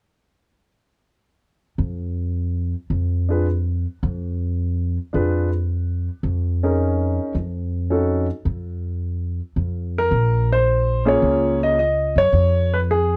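Worn, warbling cassette tape with drifting pitch and light reverb colors this cool, moody swing jazz fragment, cut from a longer piece. A woody, thumpy upright bass, plucked and up front, enters at 1.8 seconds, and an intimate grand piano with long sustain and audible action noise joins with the melody at 3.3 seconds. The piece moves from an open, chordless opening into a new section at 10.1 seconds, where the harmony settles onto minor seventh and minor chords.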